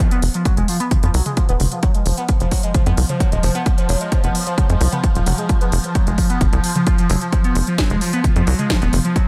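A heavy, overdriven electronic kick opens this dark, relentless stretch of driving peak-time techno, set up front beside a layered kit of cracking snare, smooth hi-hats and toms that carries its own overdrive and studio reverb. At the same moment a screaming, guitar-like synth lead starts its gritty riff, built from sawtooth and pulse waves and coloured by distortion, tube saturation, phaser, subtle chorus, vibrato and tape echo, with a filter sweep running across the whole passage. A tight, punchy sequencer bass joins at 0.2 seconds, its sawtooth and square-wave plucks decaying quickly and sitting up front with the kick. From 0.9 seconds a swarming, detuned drone of unison sine voices holds a single tense, evolving note with a granular edge and its own reverb. The lead, bass and drone all carry sidechain pumping, and the whole cut, taken from a longer piece, sits in a digital ambience over a steady straight four-beat pulse.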